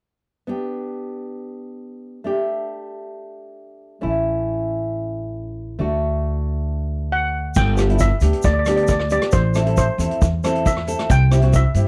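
Calypso in a carefree, sunny mood, cut from a longer piece, opens on fingerpicked nylon-string guitar, up front with fresh strings and a deep classical tone. Woody pizzicato upright bass joins at 4.0 s, and a bright, shimmering steel pan lead played with hard rubber sticks arrives at 7.1 s. A grainy egg shaker and a street-band drum kit with a boomy kick, dark cymbals and a rolled-off top then fill out the close, dry 1970s-style small-room sound.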